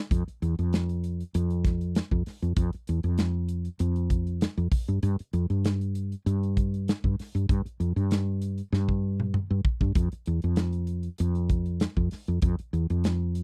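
Electric jazz fusion in a slick, funky mood, this dry, close excerpt in 4/4 pairs a woody, round fretless electric bass, held up front in a low register, with a punchy, polished modern studio drum kit of hi-hat, kick, snare and toms that breaks into a drum fill from 8.7 to 10.0 seconds.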